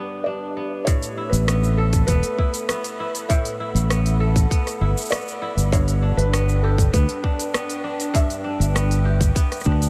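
A tight, up-front electronic kick and a smooth-hatted organic electronic kit with cabasa and rim click settle into a straight 4/4 pulse at 0.9 seconds, both carrying a tape-warm sheen. This short folktronica excerpt feels playful and delicate, moving from G to Asus2 and back to G at 5.7 seconds. An overdriven, growly fingered electric bass joins at 1.3 seconds, bright, direct and sitting up front in the low register. Above it, a ringing, crisp fingerpicked kora spins arpeggios while a soft, felt-muted upright piano carries an intimate, mellow melody, both trailed by a diffuse ambient delay. A warbling, detuned tape-like pad with slow attack and long release holds sustained chords underneath, its dark, nostalgic lo-fi tone thickened by chorus and its own reverb. Light reverb and digital ambience give the piece a gentle sense of space.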